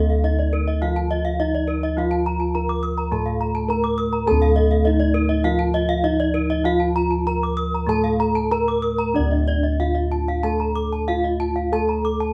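The bossed gongs stand out most, sitting up front with a round, dark, smooth bronze tone whose beating pulse carries the bass line from D2 up to A4 throughout this shimmering, brilliant passage of Balinese gamelan in D pelog. The music moves in a straight 4/4 at 93-104 BPM, with a bronze metallophone carrying the melody between D4 and Bb4 while a lower metallophone plays accompaniment in the D3 to A3 range. Above them, two metallophones spin arpeggios, one from D5 to D6 and a quieter one reaching from Bb4 up to Eb6+35c. The metallophones split in character: one is struck with padded disc mallets for a mellow, soft, vintage sound, while others are played with horn mallets for a bright, ringing attack, and one of these is close-miked, dry and full. Paired tuning gives several of the metallophones their shimmering beats against the moderate room reverb. The ensemble plays live together, and the music shifts into a new section at 9.1 seconds before this cut from a longer piece ends at 12.3 seconds.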